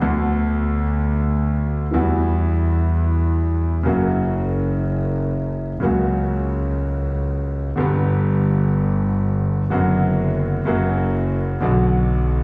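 Passionate and elegant, this short tango excerpt in B minor unfolds in free time, with a smooth, vintage-toned concert grand piano laying down deep-bass accompaniment alongside a single bowed double bass whose earthy, nasal, biting tone and light vibrato sit close and up front, both playing throughout the 12.4 seconds against a wet scoring-stage reverb heard from further back in the room as the harmony moves through Bm7/D, Emadd9, F# and G before settling on Bm.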